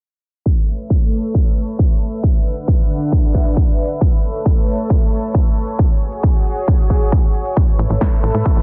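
Euphoric and soaring, this short uplifting trance passage at 135 BPM in A major sets a lush, detuned sawtooth pad with chorus, phaser and sidechain pumping over a punchy, up-front electronic kick and a big-room kit of crisp hats and snare re-recorded in a large room, moving through Aadd9, D6 and F#sus2 under a filter sweep in a dense, heavily limited master, before a tight, nasal sequencer bass arrives at 7.8 seconds.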